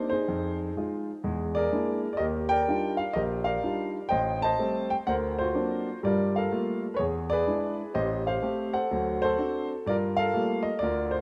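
Solo jazz piano in G minor, swung at 125 BPM in 4/4, with a cool, late-night mood in this short cut from a longer piece. A clear concert grand plays alone from 0.0 to 11.2 seconds, ranging from A1 to A5, its deep bass and natural tone sitting up front in the mix. The harmony moves through rich jazz colours, from Fm7 and E7#11 to Ebmaj9, then a minor turnaround of Am7b5, D7alt and Gm9, before E7, Am7b5 and D7 bring it back to Gm9 at 9.9 seconds as the opening section begins again. The tuning sits slightly high at A4 = 441 Hz. Light reverb and small room ambience frame the instrument in a rough home demo mix.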